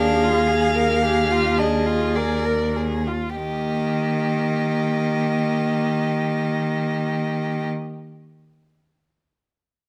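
Classical slow romantic movement for string quartet in 3/4, tender and warm, cut from a longer piece and moving with a flexible rubato that slows down through the opening 3.4 seconds. A clear, distant-sounding first violin carries the melody with smooth vibrato while a second violin adds a rich, even line beneath it, the viola fills in focused accompaniment, and an up-front cello anchors the bass. Close, detailed microphones and light reverb catch each bowed player, as the harmony settles from a dominant-seventh chord over an Eb bass onto Eb at 3.4 seconds.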